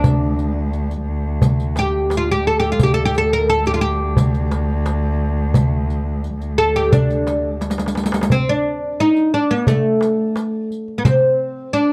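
In straight 4/4 at 87 BPM, a darbuka with a clay shell and natural skin sets the pulse alongside a soft-handed riq whose bright jingles sit close and dry, both running from 0.0 to 11.8 s. This short cut from a longer Turkish makam ensemble piece carries a soulful, longing mood, opening in D makam ussak before moving to D makam hicaz at 8.3 s. The fretless, plectrum-plucked oud leads the melody throughout, its double strings giving a woody, deep voice placed up front in the mix, moving between A3 and Bb4. Beneath it, a single bowed cello holds a dark D2 drone with vibrato, portamento and a smooth top, until it falls away at 8.4 s. A drum fill from 7.6 to 8.3 s marks the shift into the new section, and light reverb rounds out the dusky, warm production.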